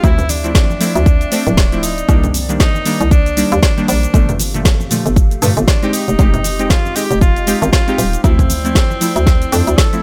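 A swung 4/4 deep house groove, cut from a longer piece, rides on an up-front layered electronic kick, a drum kit of woody snare, dark hi-hats and shaker in studio reverb, and soft-handed congas in the background, while a hollow, bouncy FM bass pumps under sidechain, mellow detuned chord stabs with chorus and delay pulse through minor-ninth changes, a warbling lo-fi tape-like pad hovers very quietly, and a clear tenor saxophone with light vibrato and delay carries a smooth, pop-style melody over the deep, warm mood.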